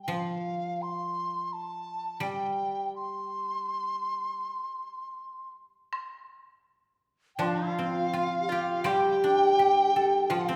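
Graceful and pastoral, this short rubato passage from a longer Chinese traditional chamber piece sets a pure, buzzing large dizi melody up front over silvery, ringing guzheng accompaniment, with a woodblock entering in the background at 5.9 seconds and, from 7.4 seconds, an airy, hollow low xiao and a dry, percussive pipa sharing a second line, heard in a reverberant recital hall.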